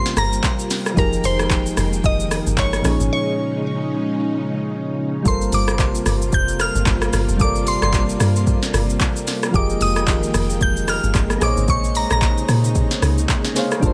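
A deep, round log drum bass with a dark, percussive FM bite anchors this hypnotic, late-night amapiano excerpt beside an up-front, produced R&B drum kit of soft kick, sharp snare, hi-hat, rim click, shaker and handclaps, roughened by overdrive and a small-room character. Above them, a woody, bright mallet-like synth pluck carries the melody through chorus and digital delay, while gentle, mellow electric-piano-like synth keys with chorus supply accompaniment and a vintage string machine of violas holds evolving sustained chords in ensemble chorus. Swung sixteenths keep the groove loose, a break arrives at 3.1 seconds before the section repeats at 5.3 seconds, and light reverb surrounds the mix.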